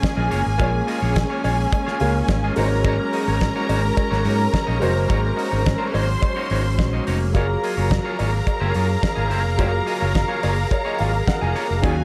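A straight 4/4 disco groove at 107 BPM drives this glamorous 12-second cut, built on a damped 70s drum kit with a fat snare, tight kick and gated reverb, a round, up-front fingered electric bass entering at 0.2 s, a background cowbell, a slightly broken-up twangy electric guitar, a warm baby grand piano that adds a fill at 10.2 s, and two rich, bowed studio string sections, one holding sustained chords and one carrying a lush, distant second line over Bbm7, Ab9sus4 and Gbmaj9, all in light reverb.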